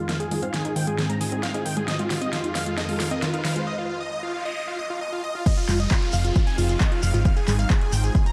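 Driving and euphoric, this uplifting trance passage in F minor at 134 BPM opens on a build-up where a huge, airy supersaw lead and a lush, thick unison pad pump against the beat, while a warbling vintage analog pluck plays arpeggios through chorus and delay until 3.6 seconds, both synths under filter sweeps as an overdriven big-room kit with a huge snare and metallic hats plays a fill. After a brief break with a noise sweep and background risers, the drop lands at 5.5 seconds on Fm7, bringing in a punchy analog kick up front, a mellow plucky unison lead with vibrato in the background and a grainy, close shekere, with a round, dark FM bass following at 5.7 seconds. Light reverb and digital ambience frame a dark production, and the passage is cut from a longer piece.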